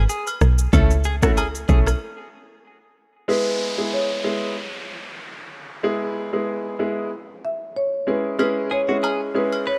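A punchy, woody log drum bass grounds this joyful, sunny afrobeats excerpt. Its dark, fast-attack tone sits up front beside an electronic afro-pop kit with a deep kick, rim click and shaker, and both drop out at 2.0 seconds for a short break. A clear, polished baby grand piano carries the accompaniment from 0.7 seconds onward, its short-sustain chords moving through A, E and C#m. At 3.3 seconds a smooth rosewood marimba takes the melody with tape echo, joined by electronic downlifter and riser effects. A bright, twangy clean electric guitar picks a compressed riff with subtle chorus and tape echo at the opening and again near the close, while agogo bells and woodblock with egg shaker and group handclaps add acoustic color in those same spots. Light reverb and small room ambience round out a warm production.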